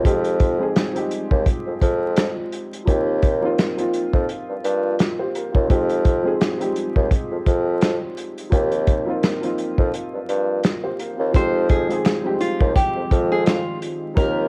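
A worn, woody upright piano with audible action noise and a soft-attack bassoon bass with light vibrato open this reflective, moody boom-bap hip-hop cut at 85 BPM in F minor, joined by a punchy, small-room soul drum kit with a swung 16th-note feel and cassette-tape grit over Fm7 and Eb69 chords; after a break, a hollow, flute-like pad with chorus arrives at 11.3 seconds alongside a fingerpicked nylon-string guitar melody with finger squeak, then very quiet finger snaps appear at 12.0 seconds, all under light reverb and vinyl crackle.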